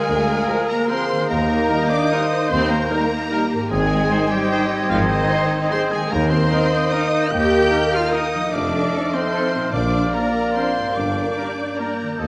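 The recording sounds worn and warbly, as if played from an old cassette whose pitch drifts, with a wet scoring-stage reverb around a full classical orchestra in a sweeping, festive mood at 149 BPM in 3/4, its beats uneven and pushed by rubato. A rich, expressive violin section carries the melody up high, with vibrato, while a clear, intense second violin section, an airy flute group with crisp attack, a warm oboe and a very quiet, mellow clarinet weave second lines in the background. A smooth, even viola section and a soft-attacked, roomy bassoon fill in the accompaniment, and a ringing, fingerpicked concert harp plays arpeggios throughout. The bass is anchored by a focused, close cello section, a distant, clear double bass section and a mellow tuba, with a French horn section holding sustained chords and a bright, distant trumpet adding stabs from 0.5 seconds. The harmony moves through Eb, Ab, Cm7/Eb and F7 before arriving on Bb, where very quiet timpani struck with hard mallets enter briefly at 9.7 seconds, and the passage is cut from a longer piece.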